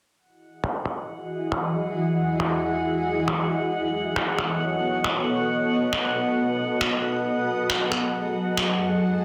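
A blurred, detuned granular cloud pad sits up front with 12-bit sampler grit, holding slow-attack chords from Emaj7 through B9 to F#m69 in a ghostly, melancholic future garage excerpt at 136 BPM with a 65% swing on the 16ths. Electronic finger snaps, re-recorded in a large room with a low-pass filter and soft clipping on the snare, carry a filter sweep across the whole passage, while a glassy, drifting harmonics texture with chorus hovers high on F#5 from 1.1 seconds. The mix is bathed in a lush hall reverb and finished with a dense, heavily limited master.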